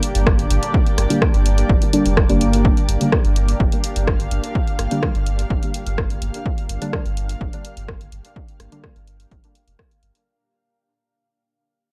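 An up-front, punchy electronic kick anchors this nocturnal, meditative dub techno excerpt in G minor at 126 BPM, alongside a round sine sub bass, hi-hat and rim clicks from an analog drum machine, a blurred granular cloud pad with built-in reverb, and a soft, evolving chord stab entering at 1.1 s with chorus, phaser and dub echo under a filter sweep, the pad, bass and stab pumping to the sidechain on a Gm chord, all carried by gritty cassette tape character before a fade-out from 2.6 s.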